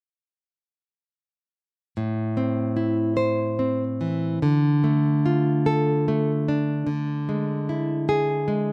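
Intimate and passionate, this romantic excerpt for solo classical guitar unfolds in A minor at a rubato 49 BPM in 6/8, its fingerpicked nylon-string guitar, full-bodied and fresh-stringed with a deep classical voice, sitting up front in light reverb as it moves from Am at 2.0 seconds through Dm to E7/D before the cut at 8.7 seconds.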